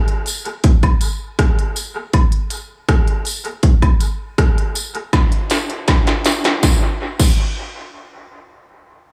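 Reggae excerpt at 80 BPM in a straight 4/4 with a tender, sweet mood, built on an up-front electronic industrial drum kit of heavy kick, clanging snare, rim click, crisp hi-hat and crash cymbal, tape-warm and treated with gated reverb and dub echo, joined from 0.3 seconds by softer acoustic tambourine and woodblock in a small room, all set in a digital ambience, with a drum fill from 5.1 to 6.6 seconds leading into a new section.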